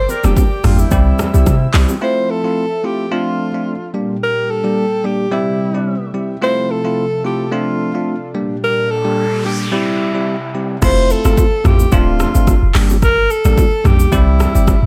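A breathy alto saxophone with vibrato carries the melody through this sultry, smooth afrobeats excerpt, over a bright, bell-like tine electric piano and a soft sawtooth pad with chorus, while the overdriven deep house drum kit with its deep kick and metallic hats, the boomy sine 808-style bass and very quiet, ringing bongos and congas drop away at 2.0 seconds, an electronic noise sweep enters at 8.9 seconds, and the drums, bass and hand percussion return at 10.8 seconds as the pad falls silent.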